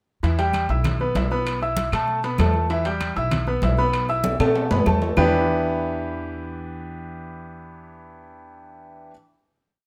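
A bright grand piano playing an octave montuno leads this short, passionate and danceable salsa piece at 194 BPM in E minor, sitting up front with a dark, thumpy gut-string upright bass whose pizzicato tumbao anticipates the chords, while ringing congas mix slaps and open strokes in the background, distant metal-shell timbales play shell pattern and bell, and vintage-sounding claves join at 0.5 s with a two-bar time line, until a drum fill at 4.2 s leads into a final Em7 chord at 5.2 s, held by the long-sustaining piano and the bass in moderate studio reverb.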